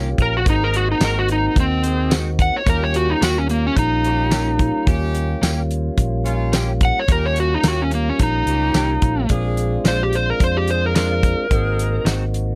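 Opening on a lightly overdriven tonewheel organ turning through a slow rotary speaker with key click, clean direct-recorded guitar stabs under ensemble chorus tucked in the background, and a dark, round fingered bass up front, this laid-back, soulful straight-eighth soul blues brings in an overdriven slide guitar solo and a damped 70s drum kit with fat snare, tight kick, hi-hat and tambourine at 0.2 seconds, then a bright jazz-style horn section holding sustained chords low in the mix from 0.5 seconds, all set in a room with little reverb and moving through Ab7, Eb7 and Bb7.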